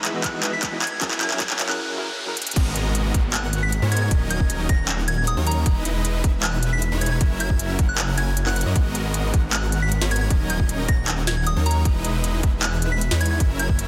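A soft, pure synth bell carries the melody through this bittersweet, dreamy future bass passage, its FM tone warbling under chorus and tape echo as a filter sweep moves across it during the build-up. Huge, bright supersaw chords play a riff in a half-time feel, shaped by sidechain pumping, a low-pass filter and delay as they move through Emaj7, F#7, G#m9 and D#m7. Early on, a gritty, overdriven tine electric piano adds accompaniment with fast tremolo through a combo amp, stopping at 2.3 seconds, while a very quiet riser and downlifter hover beneath. A trap kit with a sharp snare, crisp hats, handclaps and crash cymbal plays a fill into a short break, and a hard-clipped electronic kick sits up front. At 2.6 seconds the drop arrives with a thick, detuned saw bass, saturated and chorused, pulsing with its own sidechain pumping. The mix is dense and heavily limited with light reverb, and the passage is cut from a longer piece.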